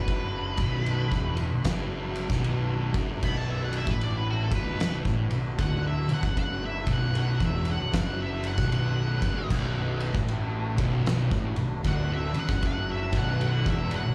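Heard through a club's PA in a small room, with club reverb and lossy compression artefacts, this hypnotic, heavy stoner and doom metal excerpt crawls at 76 BPM in B minor with a swung feel, as an octave-fuzz lead guitar solos across the whole passage, its murky tone shaped by wah, distortion and analog delay. Beneath it, two thick fuzz guitars, one in the background and one very quiet, grind out the riff over a round, overdriven fuzz picked electric bass, while a very quiet, gritty overdriven tonewheel organ holds sustained chords through a slow rotary speaker with audible key click. An oversized low-tuned drum kit sits up front with a boomy kick, fat snare, shadowy cymbals and a saturated, pumping room sound, and a bright, double-tracked fuzz guitar joins the riff at 9.5 seconds.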